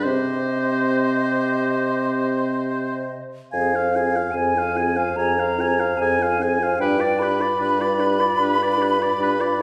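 A mellow silver concert flute leads this slow, romantic movement for wind quintet, its hollow, pure tone carrying the melody with vibrato while a clear oboe, up front and touched with light vibrato, sings a second line beneath it. The mood is melancholic and yearning, moving in a rubato 4/4 at around 68-76 BPM over a harmony that passes from C minor to F minor at 3.5 seconds and reaches a G7 at 6.8 seconds. A distant, roomy French horn and a clarinet set further in the background fill out the accompaniment, while a punchy, close-miked bassoon anchors the bass with its own light vibrato. All five instruments sound together for the full 9.6 seconds of this fragment of a longer piece. The ensemble is heard from further back in a recital hall, whose generous reverb lends the sound a soft, lingering bloom.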